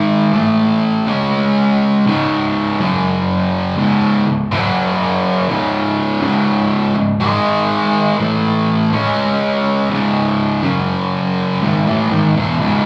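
A slow, straight 4/4 pulse at 61 BPM carries this ominous, sludgy metal excerpt in C# minor, cut from a longer piece. A lone picked electric guitar, double-tracked and up front, grinds out warm fuzz distortion with slapback echo and analog delay, moving between C#m, F#5, C#5 and G#5 across a range from C#2 to C#4. It sounds like a live gig heard through the venue's PA, wrapped in moderate club reverb.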